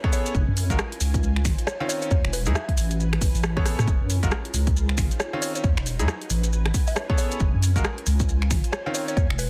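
A deep, wobbling bass with a dark, chorused tone sits up front in this sunny, bouncy two-step UK garage excerpt at 136 BPM, swung on the sixteenths, alongside a punchy, overdriven electronic kick and a layered house kit of finger snaps, bright hats and rim clicks, with a drum fill at 3.5 seconds. Over them, a bright concert grand piano plays stabs through dub echo, a woody, round mallet-like pluck carries the melody with chorus and phaser, and silky string-machine chords pump softly beneath, moving through major ninth harmonies such as F#maj9, C#maj9 and Amaj9. Grainy, close maracas round out the dry, dense and heavily limited mix.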